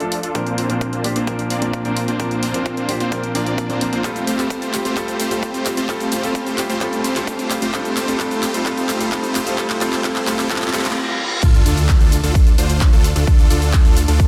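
Festival progressive house at 130 BPM, anthemic and triumphant, in which a clear concert grand piano and huge, detuned supersaw chords pump under sidechain, the supersaws sweeping through a low-pass filter, across a build-up over Bbadd9 and G9sus4, while a punchy, overdriven electronic kick from 0.3 s, a layered big-room kit with claps, hats, shaker and cymbals, a drum fill from 4.0 s and very quiet risers and a reverse cymbal lead to an 11.4 s drop on Dm where a fat analog bass enters, all set in a lush hall reverb and a dense, heavily limited master.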